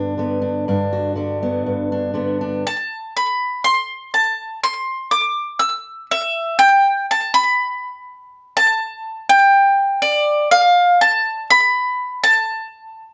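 A warm, up-front fingerpicked steel-string acoustic guitar opens this hopeful, anthemic folk passage in G major at 122 BPM in a straight 4/4, picking a G chord until 2.6 seconds. At 2.7 seconds a bright, round, double-string picked mandolin takes over, carrying the melody alone with a slapback echo through a build-up that lasts to 6.6 seconds and on into a second section, all in light reverb and tuned slightly sharp to A4 = 444 Hz.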